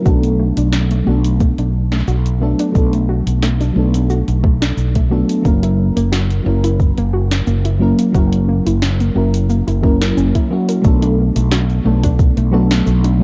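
Smooth and relaxed, this sunset chillout excerpt in B minor drifts at 89 BPM with a light swing, as a mellow, full-bodied FM electric piano with chorus, phaser and tape echo lays down Bm7 and F#7 chords over a dark, round fretless bass and a soft overdriven electronic kick, while a gentle, warbling pluck traces arpeggios and a smooth R&B kit adds a sharp snare, hi-hat and cabasa, all steeped in the character of a home cassette recording with light digital ambience.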